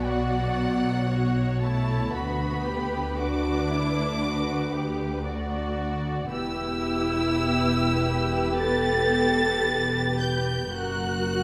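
Yearning and elegiac, this slow romantic movement for string orchestra, cut from a longer piece, moves in B minor at a rubato 48-59 BPM in 4/4, its harmony passing from Bm through Em to F# at 10.7 seconds. Muted violins carry a high, veiled melody with vibrato above a second violin line, while con sordino violas fill the middle and cellos with light vibrato join a rich, lush double bass section on the bass. All five sections play together throughout the 11.4 seconds, bathed in a dark, hushed sound and the wet reverb of a scoring stage.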